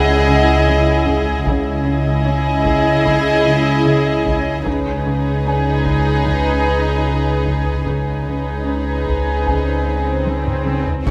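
A close, intimate scoring-stage sound with moderate reverb frames this ominous, eerie suspense cue at 75 BPM, cut from a longer piece and moving from C#madd9 to G#m/C#. Floating violins bowed sul tasto carry the melody over a second violin line and soft-attack violas, while dark cellos play a riff in the background and hold a bass line with the double basses and a deep, full sub bass drone, and a felt-muted upright piano adds a very quiet, mellow texture up high. Close, dry taiko drums with heavy sticks enter at 1.1 s, an electronic swell and impact builds from 9.6 s and is joined by a drum fill at 10.3 s, and at the very end a high violin texture and a clear, barely audible trombone section chord appear.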